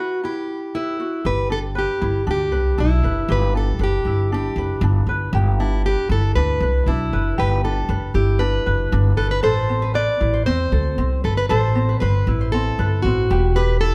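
A full-bodied, fingerpicked jumbo steel-string acoustic guitar sits up front and carries the melody in this heartfelt, easy-going acoustic pop passage, cut from a longer piece in G major at 117 BPM with a straight 4/4 feel. A bright, thumb-plucked ukulele keeps a light accompaniment beneath it from the start. At 1.2 seconds a woody pizzicato upright bass on steel strings enters up front, lending a warm low foundation as the harmony moves from Emadd9 to a long stretch of G6. At 9.4 seconds the chords shift to Amadd9, and a dark nylon-string classical guitar with old strings joins in the background with deep fingerpicked arpeggios before the music returns to Emadd9. The band plays live in one room, wrapped in a moderate stone-room reverb that gives the blend a natural, shared space.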